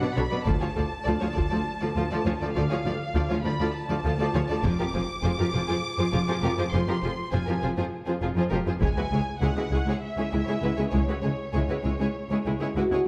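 This epic orchestral film score cue, cut from a longer piece, drives forward in a relentless 7/8 at 201 eighth-note beats per minute, moving through D minor, F minor and C-sharp minor chords. A lush, distant first violin section carries the melody with rich vibrato, while a focused second violin line sits beneath it and a close, clear viola section fills in the accompaniment. The bass is split between an intense, bright cello section and a smooth, even double bass section. A close and dry taiko ensemble, struck with heavy sticks, plays from 0.5 s until 10.0 s. At 12.8 s a mellow French horn section steps up front with soft-attack sustained chords, all set in the wet reverb of a recital hall.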